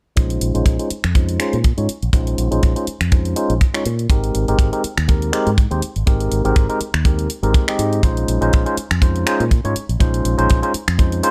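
A tight, polished acoustic kick drum sits up front and carries the most weight in this cosmic, sleek nu-disco excerpt, framed by a touch of studio reverb. Beside it, an overdriven tine electric piano plays the accompaniment with a barky, gritty tone run through a combo amp, colored by vintage 12-bit sampler crunch, sidechain pumping, a low-pass filter, slapback echo and a filter sweep across its whole span. A fingered electric bass with an envelope filter gives a bright, punchy, direct-amped low end, while a layered, electronic pop drum kit adds finger snaps and crisp hi-hats from further back. The harmony moves from Bbm11 to Abmaj9 at 4.1 seconds and returns to Bbm11 at 8.0 seconds, with lightly swung sixteenths giving the groove a relaxed lilt. The overall room sound is close and mostly dry, and the clip is cut from a longer piece, with every part running from its opening moment to nearly the end.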